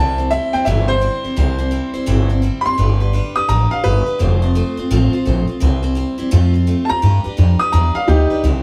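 Rockabilly at a brisk 170 BPM in C major with a swung feel, this short, retro and upbeat clip is cut from a longer piece, with the band playing live together in a large studio with moderate reverb. A clear, boxy upright piano carries the melody up front with audible action noise, playing from 0.0 to 4.2 seconds and returning at 6.9 seconds. Beneath it, a bright, full-bodied picked steel-string acoustic guitar with finger squeak supplies accompaniment, and a thumpy, woody pizzicato upright bass on gut strings drives the low end through the whole clip.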